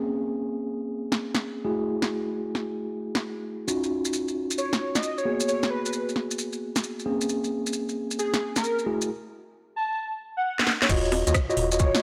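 This skippy, soulful two-step garage cut moves at 133 BPM in 4/4 with a heavy 16th-note swing in Eb minor, opening on mellow tine electric piano stabs through an analog delay over minor-ninth chords, before a garage kit with cracking snare, metallic hats, bongos and rim clicks enters at 1.1 seconds and grainy, close maracas follow. An airy, dreamy lead with a detuned, chorused sine tone and vibrato carries the melody from 4.6 seconds. After a drum fill, the drop at 10.9 seconds brings in a tight, tape-toned electronic kick and a hollow, organ-like FM bass, all caught on a dry, gritty hardware recording with transformer saturation and light reverb.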